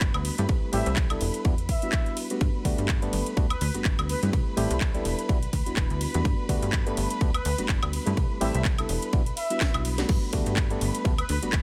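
Light reverb and digital ambience surround this funky, sunny stretch of filtered disco house at 125 BPM in G major, with swung sixteenths. An up-front, punchy electronic kick anchors a tape-toned house kit of cracking snare, metallic hi-hats, handclaps, ride, crash and woodblock, with sidechain pumping on its cymbals, hats and percussion and a drum fill at 9.6 seconds. A plucky sawtooth bass with tube saturation, a barky, reedy electric piano with overdrive, phaser and 12-bit sampler grit, and distant, lush bowed strings holding sustained C6, Em9 and Gmaj9 chords all pump with the sidechain, while a warm trumpet section with light vibrato carries the melody from 0.7 seconds and returns at 7.3 seconds.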